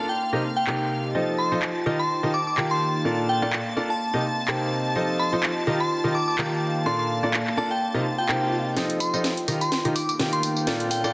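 A clear, up-front baby grand piano riff opens this euphoric, joyful piano house excerpt in F mixolydian at 126 BPM, joined from the first moment by a glassy FM synth bell melody carrying chorus and dub echo, with the piano's own dub echo and low-pass filtering. Beneath them, a soft-attack symphonic violin section holds floating, sul tasto chords touched with vintage 12-bit sampler grit, while a warbling, detuned, lo-fi pad adds a dark, nostalgic texture. At 0.7 seconds a layered electronic house kit of handclaps, hi-hat, snare and tambourine arrives with a 16th-note swing, its cracking snare and warm hats softened by low-pass filtering. The harmony circles through Cm7, F7, Ebadd9 and Bbmaj7, tuned slightly flat of standard pitch, and a very quiet swell and riser enter at 8.1 seconds, leading into a build-up and drum fill from 8.8 seconds. A lush hall reverb surrounds the dense, heavily limited modern mix.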